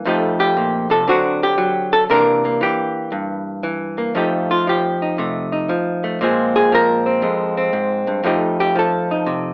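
An archtop guitar, miked and amplified, carries this short, playful and relaxed piece of solo jazz on its own, its clean, picked electric tone sitting dark and up front. The swung 4/4 feel keeps things loose and easygoing as the hollow-body voice moves through a chord sequence of F9, D7 and C9, then returns to F9 and touches a Bbsus2 before landing back on F9. At 4.1 seconds the piece shifts into a new section, where the guitar takes a more soloistic turn that runs to the end at 9.5 seconds. A moderate studio reverb gives the notes a little air, while an AM radio filter colours the sound with a boxy, nostalgic cast. Cut from a longer performance, the fragment feels like a casual glimpse of a musician at ease.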